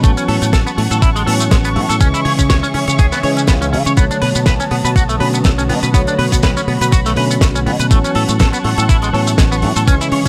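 A lightly swung 16th-note groove at 122 BPM in 4/4 drives this sensual, sleek nu-disco excerpt, where an overdriven, thumpy electronic kick sits up front over a dry, damped 70s kit of fat snare, hi-hat and shaker, joined by a punchy fingered bass with an envelope filter and tube saturation, a twangy clean electric guitar riff with chorus and delay, a gritty tine electric piano carrying sidechain pumping and delay, and distant, dark chamber strings holding bowed vibrato chords that also pump, all moving through A6, C#m and Bm7 under light reverb.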